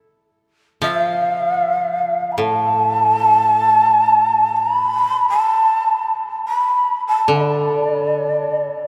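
This is Japanese traditional chamber music, a short cut from a longer piece in free time and D kumoi, with a still, austere mood. A breathy, mellow bamboo shakuhachi carries the melody up front in a high register, its end-blown tone colored by vibrato, tongued attacks and chiff, with an unsteady quality. Beneath it, an acoustic koto played with fingerpicks provides quiet accompaniment in a low register, its sound dry and woody. Both instruments enter together at 0.8 seconds and play until 8.9 seconds. The recording is set in a vast, echoing space with a cathedral-like reverb that lingers for 5.8 seconds.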